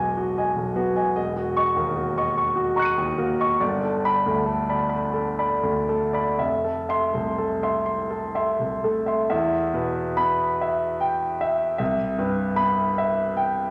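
Impressionist classical solo piano in a mysterious, wistful mood, this fragment of a longer piece unfolds in a freely rubato 6/8 on a warm, up-front concert grand with deep bass and a natural tone, its lush ninth and seventh chords ringing through a wet recital-hall reverb before the music turns to a new section at 9.3 s.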